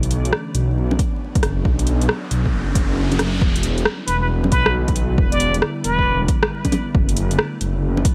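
Dry and dusted with vinyl crackle, this rainy, melancholic future garage excerpt at 136 BPM in E dorian swings over a swelling, menacing detuned saw bass and an up-front deep house kit of bongos, metallic hi-hats and rim clicks, with an overdriven punchy electronic kick that enters at 1.0 seconds, a faint electronic riser, an ethereal chorused pad pumping in the background, and a brilliant plunger-muted jazz trumpet solo with tape echo arriving at 4.1 seconds.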